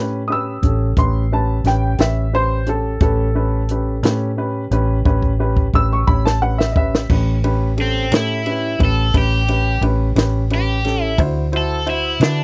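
A slow blues in 12/8 moves at 59 dotted-quarter beats per minute with a straight, rollicking, swaggering feel in A mixolydian, tuned slightly low. The grand piano lays down a long-sustaining accompaniment under a dark, round, foam-muted vintage electric bass. A compact cocktail drum kit sits up front with dark cymbals, a high-tuned snare and a punchy kick. From 0.3 seconds an upright piano takes a woody, intimate solo with audible action noise, a slightly detuned tone and short sustain, and a drum fill closes its turn at 7.1 seconds. A cranked stack guitar enters at 7.8 seconds with a bright, picked, overdriven solo as the harmony shifts from A9 to D9 near the end. The dry, close 1970s-style studio sound keeps this short cut from a longer piece intimate and punchy.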